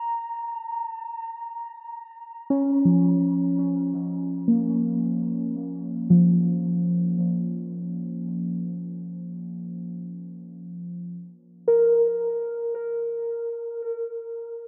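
Serene and melancholic, this ambient excerpt in free time features a solo of muted, felt-like synth keys, intimate and dark with a fast attack, a decaying triangle-and-sawtooth tone over a noise layer, chorus and tape echo, sitting up front in a dreamy mix soaked in lush hall reverb, spanning F3 to Bb5 across its 14.7 seconds.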